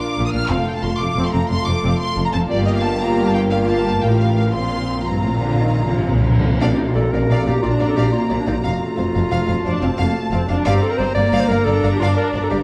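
A dark, reverberant recital-hall sound frames this heroic adventure film cue, a passage cut from a longer piece in Bb major, moving at 119 BPM in a straight 12/8 with a bold, adventurous mood. A lush, woody studio violin section carries the melody high above a second line from a symphonic violin section, while a smooth viola section fills the middle with vibrato-rich accompaniment. A distant, rich double bass section and a mellow cello section set further back anchor the low end, and a tight French horn section holds sombre sustained chords in the background until about 6.5 seconds. Very quiet timpani with round, soft-mallet strokes add a fill before the band accent at 6.6 seconds, and a shadowy cymbal swell with tam-tam rises behind the ensemble. From that accent onward, a bright solo clarinet in classical style joins as a second line while the strings repeat the stately Bb, F, Gm7 progression.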